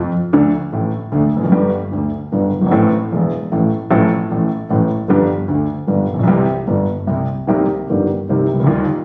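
An intimate, up-front concert grand piano provides the accompaniment in this melancholic, tense tango in 3/4 at 151 BPM, played rubato in C major, its deep bass, long sustain and audible action noise giving it a smooth, vintage character as the harmony moves from Dm through G, Am and F/A to G7 and C. A single bowed double bass sits distant beneath it, its clear, biting tone carrying vibrato and an intense edge. Captured on a phone in the room with light reverb, this excerpt turns to a Cm7 at 7.5 seconds before both parts stop at 8.8 seconds.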